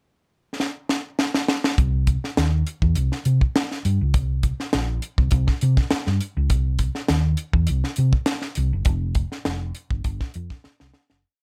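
A straight, syncopated funk groove in common time drives this short, energetic and gritty piece, which opens with a pickup bar where the drum kit enters at 0.6 seconds with a fill. The dry acoustic kit sits up front, with a high-tuned snare, tight kick and hi-hat carrying ghost notes through its syncopated pattern. At 1.8 seconds the music drops into a breakdown as the hollow-body, short-scale electric bass comes in, fingered and amped with a dark, round tone that also sits up front. Its syncopated riff, anchored on the downbeat, ranges from F1 to C3 and is threaded with muted ghost notes and chromatic approach notes. A light reverb surrounds the pair, and from 8.9 seconds the piece fades out while the drums play one more fill near the close.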